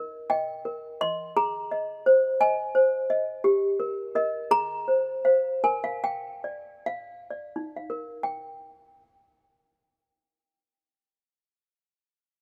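Closely miked and touched with light reverb, this dreamy, innocent classical lullaby excerpt in Eb major features a solo toy piano, soft, bell-like, clanky and slightly out of tune, sitting up front in a rubato 6/8 at 42-58 BPM, slowing from 2.4 to 8.2 seconds before a brief second section begins and the instrument falls silent at 11.7 seconds.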